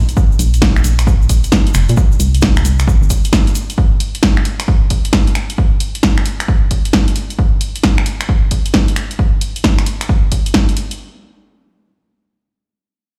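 A soulful, moody two-step UK garage cut with a swung sixteenth-note feel, lifted from a longer piece and heard as though played on a big sound system in a bare stone room. A hollow, organ-like FM bass with a dark, percussive attack and sidechain pumping opens the clip up front but drops out after 3.1 seconds, while a grainy, bright egg shaker sits in the background until 3.8 seconds. Alongside them from the start, a punchy, tape-warm analog drum machine of finger snaps, hi-hat and snare carries on through the clip with an up-front electronic kick drum until 10.7 seconds.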